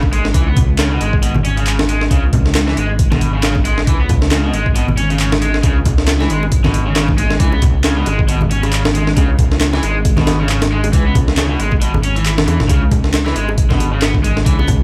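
A gritty, pitched-up breakbeat drum kit with a thumpy kick and high-tuned snare drives this raw, energetic breaks excerpt, joined by a deep, rumbling detuned saw bass up front and a crunchy overdriven guitar riff with low-pass filtering and digital delay, while ringing congas and bongos and tape-warm electronic handclaps sit in the background over a bed of vinyl crackle on a C#7(no3) chord.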